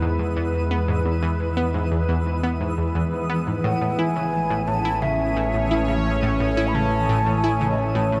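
Cosmic and expansive, this ambient passage at 87 BPM floats on a resonant, up-front synth pad holding Emaj7 then Amaj7 chords, over an evolving analog drone bass and a round, detuned analog pluck riff roughened by vintage 12-bit sampler grit and tape echo. A twinkling granular texture adds octave-up shimmer in the background, and at 3.6 seconds a hollow, airy concert flute enters with a vibrato melody carried on tape echo. The dreamy mix is soaked in a huge ambient reverb, and the recording is cut from a longer piece.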